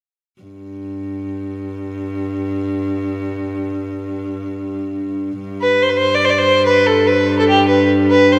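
A rich, smooth fiddle enters at 5.6 seconds, carrying the melody across the range of G4 to D5 with light vibrato over a soft-attacked viola da gamba drone on G2 that has sounded since 0.4 seconds, its fretted, airy bowing close and intimate. This excerpt of a medieval dance in G major moves in free time with an ancient, festive mood. Both bowed parts sit up front in a vast, echoing cathedral reverb with a long, wet decay.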